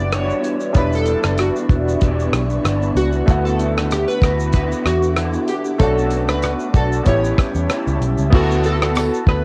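A hazy cassette home recording in a small room opens this dreamy 95 BPM bedroom-pop excerpt in D major, where glossy chorused retro synth keys carry the melody over a bright, woody upright piano, a slightly broken-up electric guitar through a small old amp with warbly pitch drift, an ethereal airy pad in the background, a round foam-muted picked bass and a dry 70s drum kit with a tight kick up front, with a jingly tambourine appearing only at 9.0 seconds.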